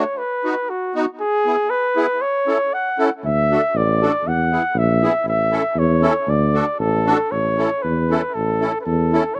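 Bouncy and jolly, this short alpine folk dance-band excerpt moves at 118 BPM in a lightly swung, rubato 2/4 in D major, with a mellow, smooth-topped flugelhorn carrying the melody up front while a reedy, shimmering musette accordion with a dark edge supplies accompaniment, both touched with slapback echo. A mellow, smooth-topped classical-style tuba joins on the bass line at 3.2 seconds as chords cycle through B, E, A and D, and the tune shifts into a new section at 7.3 seconds. The sound is dry and open-air, recorded outdoors with little reverb.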